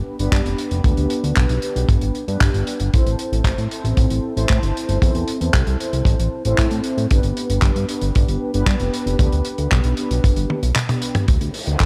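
Mellow, brassy synth stabs with chorus and delay open this danceable, melodramatic italo disco fragment over a fat, detuned analog bass, joined at once by a tight, mid-forward kick and a soul drum kit of handclaps, hi-hat and toms in a small, dark room, with a drum fill at 10.5 seconds and an electronic riser at 11.4 seconds over a Dmadd9 chord as the cut ends.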